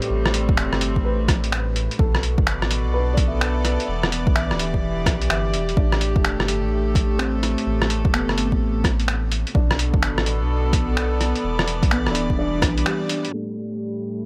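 A vinyl-crackled digital ambience frames this wistful, nocturnal future garage piece in A minor at 127 BPM with a swung 4/4 feel, where a dark, woody upright piano with audible action noise and a filter sweep shares pumping sidechained chords with a reedy gut-string chamber section, over a round, deep dub sub bass, a punchy overdriven kick and a muffled, pitched-down sampler kit of finger snaps, hi-hat and rim click, moving through Am7, Bm7 and Em7 before a brief break at 12.9 seconds.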